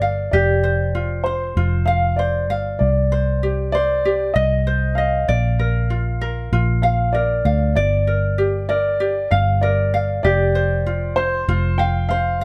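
Tender and reflective, this short acoustic pop passage is cut from a longer piece and moves at an unhurried 97 BPM in a straight 4/4. A dark upright piano carries the melody in a mellow, woody voice with long sustain, its line sitting between C5 and G5 and bathed in plate reverb. A bright, fingerpicked ukulele provides light accompaniment up front, while a vintage muted fingered electric bass anchors the low end with a round, punchy, foam-muted tone that sounds amped and sits prominently in the mix. All three parts play together from start to finish over 12.4 seconds, moving through Fsus2, Cmadd9, Bb and Gm7 before settling back on Fsus2 at 10.2 seconds. Light reverb gives the whole recording a gentle sense of space.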